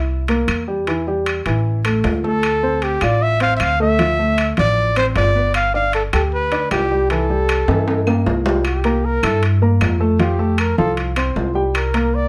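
A mellow, close-miked trumpet opens together with an intimate baby grand piano, its action noise audible, and a woody pizzicato upright bass, giving this lively, danceable Afro-Cuban jazz excerpt a straight-feel drive. Ringing, vintage-toned metal-shell timbales and background claves in a live room fill out the percussion, all under a light reverb, while the up-front trumpet carries the melody with light vibrato and scooped notes. A drum fill at 7.7 s leads into a trumpet solo from 8.7 s that runs to the end of the cut.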